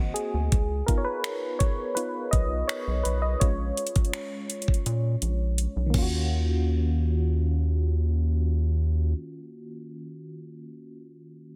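A warbling FM electric piano with tremolo leads this contemporary R&B excerpt, taking a solo through its opening seconds while a filter sweep shapes its mellow, vintage tone with a faint noise layer. Underneath, a rubbery square-wave bass sits up front, hollow and bouncy, with a resonant filter pluck, saturated grit and a dark, sustained body. A smooth electronic drum kit supplies a knocking kick, metallic hi-hats, finger snaps and a crash, with a lightly clipped snare, and it plays a fill from 4.9 seconds before dropping out at 6.1. Across the first six seconds the harmony moves through Ab7, Db7 and Bbm7 to Ebm9, and the bass carries on until 9.1 seconds, leaving the electric piano alone at the end. The mood is longing and sensual, and the dry, dense, heavily limited mix keeps every part close and present.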